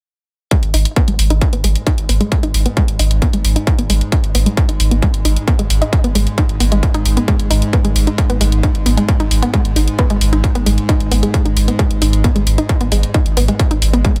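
Driving peak-time techno with an industrial edge, this short cut from a longer track holds a single G# minor chord throughout. An overdriven, distorted kick sits up front, and from 0.5 seconds a layered, overdriven electronic hi-hat enters alongside it, pumping against the kick. Beneath them, a deep, thick saturated sub bass holds a sustained low note through a low-pass filter, also pumping with the kick. An analog pluck plays a round, detuned sawtooth riff with a fast, decaying filter attack, thickened by chorus, tube saturation and delay, and a filter sweep runs across this arpeggio from start to finish. From 1.2 seconds, an eerie, metallic FM drone with ring modulation fades in slowly and hangs with a long release and its own reverb, while the rest of the mix stays dry and close.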